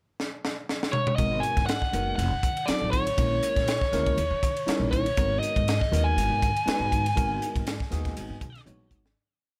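A swung sixteenth-note feel in 4/4 drives this short, funky piece of electric jazz fusion, with a crisp acoustic drum kit opening on a fill at 0.2 seconds before settling into a fusion ride groove of punchy kick, high-tuned snare and glittering cymbals in a small, pumping room. From 1.2 seconds a pizzicato upright bass with gut strings lays down a woody, thumpy, syncopated riff, while a tine electric piano treated with phaser adds clean, syncopated chord stabs in drop-2 voicings. Up front, an overdriven, picked electric guitar carries a biting, motif-based melody built in period phrases. The harmony moves from a minor ninth chord through flat-nine dominants and a half-diminished chord before returning to the minor ninth. A closing drum fill arrives as the whole piece fades out from 7.2 seconds, all heard in a dry, direct sound.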